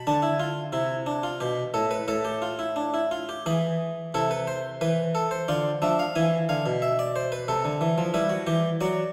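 Stately yet lively, this short cut from a longer piece is a baroque-style three-part fugue for solo harpsichord in a straight triple metre. The single instrument plays throughout, spanning A2 to B5 as its three voices weave together. Its tone is full, round and plucked, with the character of an Italian-style harpsichord strung with one set of strings. The harmony moves through D minor, a suspended E chord and E, then a second passage beginning around 4.1 seconds passes through A minor over C, D minor and E7 before settling on E minor near 8.2 seconds. The recording places the listener further back in a recital hall, where a generous reverb with a 1.7-second decay surrounds the instrument.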